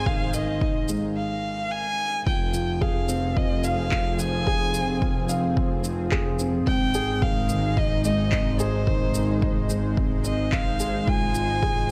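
An overdriven, punchy electronic kick drives a straight 4/4 pulse at 109 BPM, joined by an overdriven electronic shaker and handclaps, both set in studio reverb. This is an intimate, moving piece of piano and strings electronica in F minor, cut from a longer work. A brief build-up runs to 2.3 seconds before the drop. A felt-muted upright piano plays a soft, mellow riff with audible action noise and tape echo, as does a dark, woody solo violin, whose bowed melody carries vibrato. Underneath, a rich, smooth double bass section bows with light vibrato and sounds distant, pumping with the sidechain. A lush, detuned sawtooth and square-wave pad sustains chords in the background, shaded with chorus, phaser and sidechain pumping.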